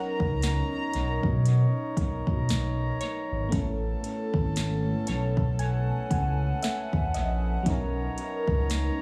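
Contemporary R&B with a romantic, smooth mood, moving at a slow 58 BPM in 4/4 with a light swing on the sixteenths, cut from a longer piece in B major. An FM electric piano layered with a soft pad carries the accompaniment throughout, its lush, dreamy tone shaped by chorus, phaser and dub echo, and it plays a fill between 4.6 and 7.7 seconds. A clear, close-miked brass ensemble holds sustained chords in a classical section style, pumping against a sidechain, while a glassy wavetable pluck sits in the background with crystalline, ring-modulated sparkle, chorus and dub echo until 8.1 seconds. Up front, a dark sawtooth synth bass glides between notes with portamento and vibrato, joined by an electronic drum kit whose soft kick, sharp snare and metallic hats are overdriven and sent into dub echo. The harmony rests on Bmaj9, shifts to Amaj9 at 3.5 seconds and returns to Bmaj9, all set in an echo-heavy mix with light digital studio reverb.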